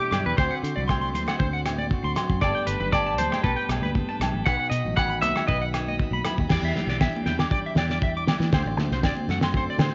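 Bittersweet and danceable, this highlife guitar band passage opens with a bright, picked clean electric guitar carrying an up-front melody through tape echo until 5.6 seconds, over twangy, slightly broken-up guitar arpeggios bathed in spring reverb and a very quiet, dark fingered guitar accompaniment. A muffled, cloth-damped drum kit with a fat snare and gritty saturation sits prominently alongside a round, foam-muted fingered bass. Ringing agogo bells join in, high-tuned congas sit in the background, and a piping tonewheel organ with key click holds sustained chords there as well. The cassette home recording has a lo-fi, rolled-off sound with light reverb, and a new section begins at 6.5 seconds on an Em7 chord.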